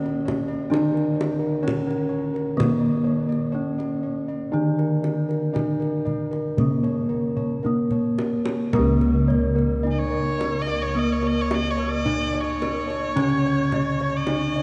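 Serene and shimmering, this Javanese gamelan passage moves at a slow 54-66 BPM in a straight 4/4, cut from a longer piece and bathed in a cathedral-like reverb with a 4.7 s decay. A bronze metallophone struck with a wooden mallet carries the ringing melody, while a second metallophone, mellow and soft under padded disc mallets, sits in the background with paired tuning that produces shimmering beats and a boxy, warm character. Bossed gongs run in two layers throughout: a bright arpeggio line high above and a round, beating bass below with a vintage, band-limited tone, joined by the tight, acoustic kendang. A drum fill from 7.4 to 8.7 s leads into the second section, where an airy background metallophone adds its own arpeggios. At 9.9 s a single bowed erhu enters up front, rich and smooth, with vibrato and portamento singing a close second line over the glowing bronze.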